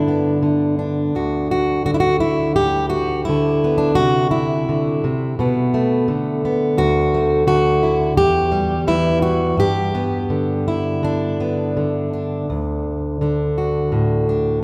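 A long, wet church reverb with a 3.6-second decay surrounds this recording, giving it the resonance of a large hall. Within that space, a single plugged-in steel-string acoustic guitar sits up front, its fresh strings sounding bright as it is fingerpicked across a range from D2 to G4. This is a gentle, pastoral folk piece in D mixolydian, set in 4/4 at around 85 BPM but played with a loose, rubato feel. The harmony moves unhurriedly through G, D, D69, Csus2, Bmadd11, Dadd9 and Em before returning to G, and a brief new passage begins on D at 12.5 seconds. The clip, cut from a longer performance, runs to 14.6 seconds.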